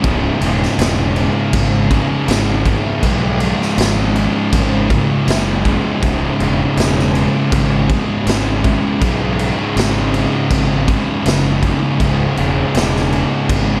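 A slow, straight 4/4 pulse at 80 BPM drives this heavy, ominous stoner and doom metal fragment, cut from a longer piece and sitting on a single C# minor chord for its roughly 13.8 seconds. Up front, a raw garage drum kit pounds out the groove with a punchy kick, a medium-tuned snare and crashing cymbals, its gritty, saturated sound blooming in a bright stone room that pumps around the hits while the top end stays rolled off. Beside it, an overdriven fingered electric bass growls low in the mix's foreground, thick with fuzz. Two dark, distorted, picked fuzz guitars grind out the riff in the background, and a very quiet, double-tracked fuzz guitar reaches higher, adding a warm haze above them. Light reverb wraps the whole, leaving a murky, crushing weight.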